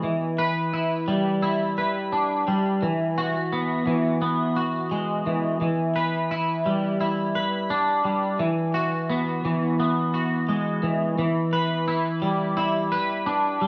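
A clean, twangy electric guitar plays alone and up front through analog chorus and digital delay in a small booth-like room, shifting between G/E and Eadd9 chords across this 13.7-second excerpt of cinematic, hopeful rock.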